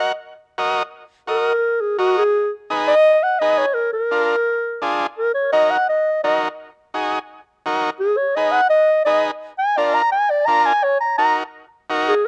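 Latin piece at 170 BPM in Eb harmonic minor, passionate and danceable, in which a dark, soft-attacked clarinet with slapback echo plays a classical-style solo from 0.9 seconds over a buzzy, vintage overdriven combo organ with heavy vibrato, both up front in a dry outdoor sound as the chords move through Ebm, Abm and Bb7, taken from a longer piece.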